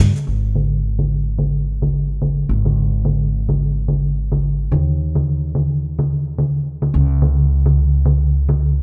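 Wistful and smooth, this short sunset chillout excerpt moves at 108 BPM in 4/4 with a 57% sixteenth-note swing, as a woody, thumpy pizzicato upright bass on gut strings with tube saturation plays up front from G#1 to D#2 beside a gritty, overdriven, compressed sampler-style kit of electronic hi-hat, congas and shaker, low-pass filtered and re-recorded in a small room, all in a dry mix with little reverb.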